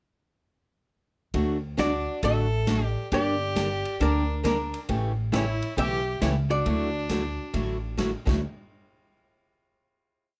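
Light reverb gives this short, complete western swing piece a close studio-room sound, with a cheerful, down-home mood at 136 BPM in a swung 4/4 in D major. The band enters at 1.3 s, led by a boxy, up-front ladder-braced acoustic guitar picking four-to-the-bar rhythm and a woody, thumpy gut-string upright bass playing a pizzicato two-beat root-and-fifth line with walk-ups. A swinging big-band kit sits a little further back, with dark cymbals, a punchy kick and a medium-tuned snare keeping a backbeat and ride pattern. At 1.8 s a clean, compressed hollow-body archtop guitar carries a dark, motif-based melody in period phrases, partly doubled in sixths by a clear fiddle whose bowed harmony line has light vibrato and an intense but smooth top. The chords move from D to Gm, then A7 and Dadd9, before the band closes on a final hit at 8.4 s.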